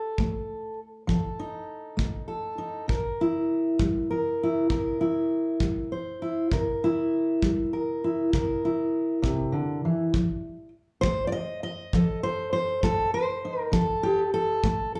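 Laid-back, gritty acoustic country blues at 66 BPM in a straight 12/8, centered on C mixolydian and moving from F7 to C7 and back to F7 at 10.1 seconds. A fingerpicked steel-string dreadnought carries the melody up front, its fresh strings sounding full-bodied with audible finger squeak and a slapback echo, while a punchy small-room kick drum sits close alongside. This short excerpt of a longer piece is heard live through a club PA.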